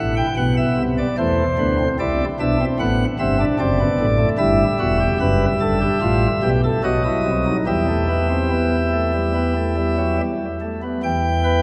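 Baroque-style classical fugue in four voices for solo pipe organ, lively yet stately in mood and in a straight 4/4. The organ sits up front with light, sparkling flute stops in a bright baroque voicing, spanning from E1 up to G5. A long, wet cathedral reverb surrounds it, and this short passage, cut from a longer piece, runs to 11.6 seconds.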